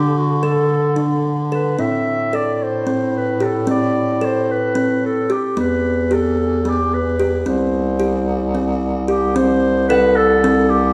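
A mellow, distant clarinet carries the melody up front in this hopeful, shimmering excerpt of contemporary chamber music in 7/8 at 222 BPM in eighths, set in C lydian over chords moving from D5 through Am and Em to C5. Beneath it, a clear bass clarinet sings the bass line with vibrato and scooped notes in a present, jazz-inflected style, while a woody, hollow-toned kalimba rings out thumb-plucked arpeggios. A very quiet concert harp enters at 9.9 s with a thumb-plucked F#5, all within a moderate scoring-stage reverb.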